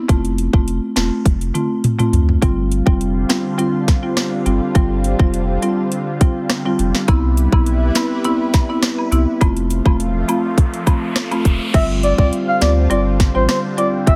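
Summery and bouncy, this dancehall excerpt moves at 103 BPM in a straight 4/4, cut from a longer piece and pressed into a dry, heavily compressed radio sound. A woody marimba with medium hard mallets opens the groove, its bright bars pumping with sidechain compression, while a round, deep analog bass and an electronic island pop drum kit, with a tight kick, sharp snare and metallic hats, sit up front beside it, the kit throwing in a drum fill from 1.3 to 2.4 seconds. At 2.8 seconds a lush, detuned unison pad arrives underneath, thick with chorus and phaser and pumping along with the marimba as the chords move from F through G7sus4 to Cmaj7. A background layer of woodblock and cabasa adds acoustic small-room texture in the middle stretch, and an electronic riser builds toward the final section. At 11.7 seconds a breathy, flute-like synth lead takes the melody with soft vibrato, chorus and tape echo over a return to G7sus4.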